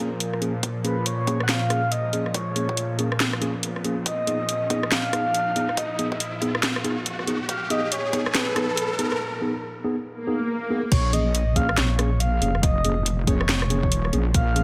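Cavernous and heavy, this deep dubstep excerpt moves at 140 BPM in a half-time 4/4 feel with a swung sixteenth-note groove, set in B-flat Phrygian over Bbm7 and Abm chords. A breathy, flute-like synth lead carries the melody through lush chorus and dub echo, floating above a tense, string-like bowed drone and stabs from a mellow tine electric piano, whose filter sweeps across the build-up. The garage kit brings a cracking, overdriven snare up front with hi-hat, rim clicks and crash, while a deep, tape-tinged electronic kick anchors the groove before dropping out ahead of the break. A riser enters at 2.0 seconds and a swell caps the break that begins at 9.2 seconds, leading into the drop at 10.9 seconds, where the kick returns and a saturated, detuned sawtooth wobble bass arrives up front with chorus. A moderate digital hall reverb gives the whole mix a spacious, lush ambience.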